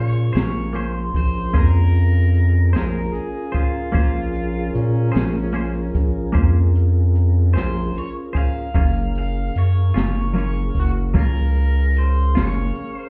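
Muffled as if heard through a wall and ringing in a stone room, this soulful, mournful slow blues excerpt in Bb minor moves at 50 BPM in 12/8, with a bright, overdriven electric guitar carrying the melody through plate reverb over mellow tonewheel organ chords turning on a slow rotary speaker, a round, deep analog bass sitting up front, a clean, compressed semi-hollow guitar accompaniment with tremolo, a distant, roomy brush kit with a boomy kick and high-tuned snare, and a smooth harmonica second line with light vibrato and scooped notes from 2.7 to 6.3 seconds, the harmony shifting from Bbm9 to Gbmaj7 at 8.8 seconds.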